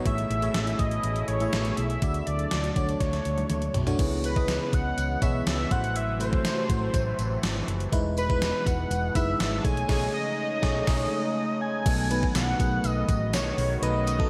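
A dreamy, reverb-soaked mix opens this short cut from a longer 1980s-style pop piece, romantic and nostalgic in mood at 122 BPM in a straight 4/4. An up-front, overdriven drum machine with thumpy kick and gated-reverb snare drives the groove, adding crash, hi-hat, toms and its own tambourine, and a drum fill lands between 3.0 and 4.0 seconds. A glassy FM electric piano with a bell-like attack carries the accompaniment through chorus and phaser, while a detuned sawtooth pad, bright yet kept in the background, sustains evolving chords with a filter swell. The octave-doubled lead sings the melody up front, bold and full-bodied with vibrato, chorus and tape echo, over a dark, round hollow-body electric bass. From 4.0 seconds a very quiet, jingly acoustic tambourine joins, and a band accent from 9.9 to 11.9 seconds caps a progression that moves from Amaj7 and Dmaj7 through C#m7, Am6 and Emaj7 to B13 and a closing B7.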